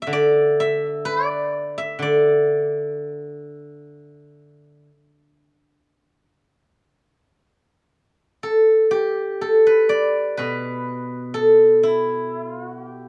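Chinese traditional music for solo plucked strings, this short excerpt carries an elegant, serene mood in the D zhi mode, moving at a free, rubato pace around 62 BPM in 4/4. A single acoustic steel-string zither, played with fingerpicks, carries the whole performance from 0.0 to 13.1 seconds, ranging from B2 up to E5. Its tone is silvery and ringing, placed up front, with a slapback echo that adds a quick repeat to each plucked note. The sound sits in light reverb, captured outdoors with little sense of an enclosing room. The passage unfolds in two parts, with a new section beginning at 7.9 seconds and continuing to the cut at 13.1 seconds.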